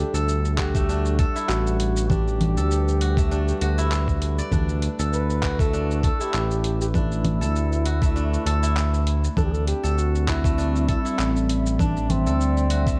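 A smooth, up-front synth bass with sidechain pumping anchors this warm, earthy organic downtempo piece at 99 BPM, joined by a gritty, thumpy electronic kick from 0.6 seconds and a dusty sampler-style kit of congas, handclaps, hi-hat and shaker with a light 16th-note swing. A distant, roomy duduk carries a folk-style melody with vibrato and delay, while a ringing, silvery steel-string zither plays fingerpicked arpeggios through tape echo and a warbling, nostalgic lo-fi pad sustains chorused chords in the background. The harmony moves from Gmaj7 to A5 and then C6, all within a dark production and light digital ambience.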